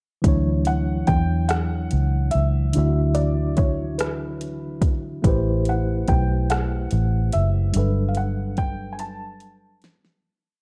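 A dark, warm production with little reverb gives this short, complete slow six-eight R&B piece a close, tender and sensual feel at 48 BPM in D major. A mellow, clean tine electric piano sits up front with held chords in a spread voicing, heard through its built-in speakers, moving from Dmaj9 to Am9 and then Gmaj9. A smooth, electronic drum kit plays a slow six-eight R&B beat, with a soft kick, fat snare, rim click and metallic hats, re-recorded in a large room. Up front as well, a vintage electric bass, foam-muted, amped, round and punchy, plays a slow, sliding line. From 0.7 seconds, a felt-muted upright piano carries the melody in soft, intimate song phrases built on motifs, its short sustain and thick felt giving each note a hushed quality. The piece fades out from 7.7 seconds, with a drum fill arriving at 9.0 seconds to close it.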